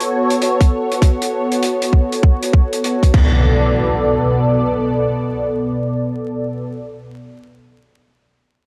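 A detuned sawtooth analog pad opens this short glitch hop clip, holding a sustained Bm7 chord with a soft attack, long release, chorus, a moving notch and sidechain pumping, sitting up front. Alongside it, an acoustic jazz kit recorded in a small room adds dark, smooth crash cymbal and hi-hat, mixed low beneath the pad. From 0.6 seconds a tight, layered, tape-warm electronic kick drum punches in up front, giving the swung sixteenth-note feel a gritty, swaggering weight. Kick and kit stop at 3.3 seconds, while an electronic impact that begins at 3.1 seconds carries on as the pad continues into the second section. The sound is dry, with a hardware-recorded edge, light reverb and a bed of vinyl crackle.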